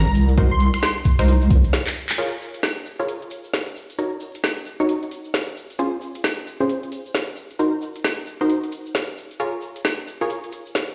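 The rhythm is a bouncy two-step garage groove at 133 BPM in 4/4, with the sixteenths swung and a late-night mood in Bb minor, cut from a longer piece. A garage drum kit with a woody snare, metallic hats, finger snaps and handclaps runs throughout, overdriven and up front, while a grainy, saturated tube shaker sits low in the mix. A knocking, overdriven electronic kick and a deep, dark wobble bass with chorus anchor the opening until 1.6 seconds. Early on, a catchy, evolving unison lead with a filter sweep, chorus and delay flashes briefly high up. A punchy, wave-folded chord stab with a filter pluck, chorus and delay carries the harmony from Cm7b5 through Bbm7, Ebm7 and Dbmaj7. A short break with a drum fill and a band accent leads into the next section at 2.2 seconds, where the stabs and drums continue under plate reverb, a big-room sound system ambience and vinyl crackle.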